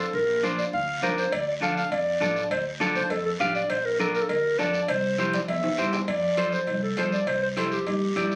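A dark, classical-style solo clarinet carries the melody up front over a clean, fingered electric guitar and a woody, thumpy pizzicato upright bass on gut strings, opening this sunny, danceable cumbia excerpt in F major at a brisk 202 BPM. Low-tuned congas played with soft hands sit saturated and compressed in the background beside a raspy, close guiro, while ringing metal-shell cowbell and timbales join at 1.3 seconds. A drum fill at 5.2 seconds leads into a new section at 6.1 seconds, and the whole piece sounds captured on a phone in the room, with a light club reverb.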